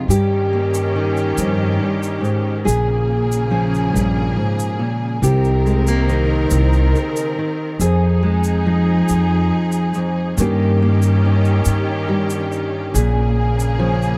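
A dark, fingerpicked steel-string acoustic guitar and a lush, bowed symphonic string section open this short haunting, reflective passage together, with the strings holding sustained chords shimmering with vibrato alongside the guitar's accompaniment. At 0.1 seconds a woody pizzicato upright bass joins, sitting up front alongside the guitar, and a grainy egg shaker adds light percussion from a small-room distance. The music moves in a slow, unhurried 6/8 with a straight feel, in the manner of an acoustic folk duo or small band. The harmony drifts through seventh chords, beginning on Eb7/G and passing through Bbm7, Cm7 and Fm7 before circling back. The sound is dry and close, like a 1970s-style studio recording with only light reverb, and the passage is cut from a longer piece, ending at 14.2 seconds.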